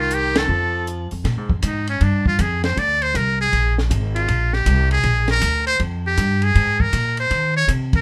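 Playful and relaxed, this excerpt of small-group swing and bop at 158 BPM in Bb mixolydian opens with the muted trumpet's melody over a clear baritone saxophone line that stops at 1.1 seconds and a band accent at 0.3 seconds, then the buzzy, brilliant muted trumpet takes an up-front solo from 1.2 seconds over a woody, thumpy pizzicato upright bass on gut strings and a dark compact cocktail kit with a rolled-off top, a high-tuned snare, punchy kick, hi-hat and ride, all in light reverb.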